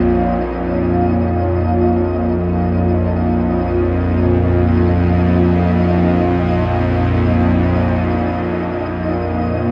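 A string-like, sawtooth drone sits up front from the opening second, low in the register with vibrato and a tense, bright edge, while a deep, moody pad of detuned sawtooth and sine layers with a sub octave holds sustained chords above it through chorus. Behind them, a grainy, flickering granular texture hovers in the background. This dark ambient drone piece unfolds in free time, tuned to A4 = 445 Hz, and its mood is vast and ominous, resting on Bb minor before shifting to Ebsus2 over Bb at 7.3 seconds. At 4.3 seconds a very quiet quartz singing bowl enters with ringing, meditative arpeggios, pure in tone with slow beating. The production is dark and washed in a huge reverb with a long 7.8-second tail, and the passage is cut from a longer piece.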